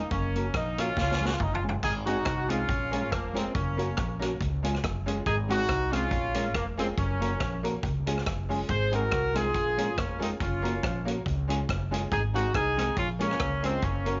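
A tight, vibrato-laden horn section carries the melody up front in this upbeat, joyful ska excerpt at 140 BPM with a light swing, over a woody pizzicato upright bass, a dark, clean electric guitar with phaser in the background, and a street-band drum kit with a boomy kick that plays a fill at 1.0 seconds, while a bright, worn, slightly detuned upright piano adds stabs from 2.1 seconds as the Gb, Db, Ab, Bbm7 progression cycles in a small room with light reverb.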